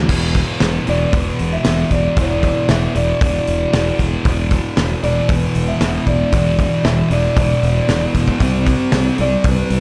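Brooding and hazy, this short shoegaze and dream pop cut opens on a thick, double-tracked fuzz guitar riff with lush chorus, an overdriven, growly fingered bass and a loose, pumping indie drum kit with a fat snare and dark cymbals, before a slightly broken-up lead guitar through a small old amp enters at 0.9 seconds with a melody carrying spring reverb and digital delay, all set in a dark small-room production.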